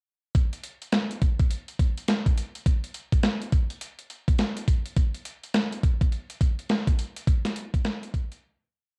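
A hard-swung sixteenth-note beat drives this short, bouncy and slick R&B piece, played entirely by a dusty, sampler-style soul drum kit of hi-hat, thumpy kick and medium-tuned snare that enters at 0.3 seconds. The compressed, gritty kit sits up front, re-recorded in a large room, while the whole recording carries the modest ambience of a small room and the character of a home cassette tape. The beat fades out from 7.3 seconds and drops away at 8.4 seconds for a brief closing break.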